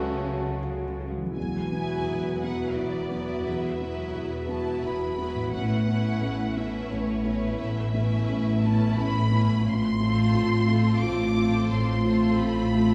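Heard from further back on a reverberant scoring stage, this bittersweet, longing film-score passage for orchestra moves in a rubato 3/4 around 87 BPM. Vibrato-laden violins carry the melody over a second violin line and lush violas, with a felt-muted upright piano, soft and intimate, its action noise audible, sitting in the background beside dark, distant horn chords and a very quiet, ringing, thumb-plucked harp. Focused, close cellos and smooth double basses anchor the bass, while a brief cor anglais line sounds only in the first 0.6 seconds before the harmony settles onto Esus2 at 1.4 seconds and drifts toward F/A at 9.7 seconds.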